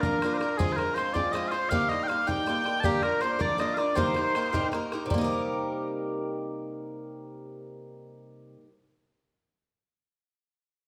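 Driving, dark and lively, this Celtic jig fragment in 6/8 puts sweet, vibrato-tinged small bagpipes up front on the melody over a reedy accordion second line in the background, a shimmering, boxy, octave-doubled picked twelve-string acoustic guitar and a boomy, distant bodhran; the pipes and accordion drop out at 4.7 s and the bodhran at 5.3 s, leaving the guitar to carry on alone until 8.7 s in a moderate recital-hall reverb.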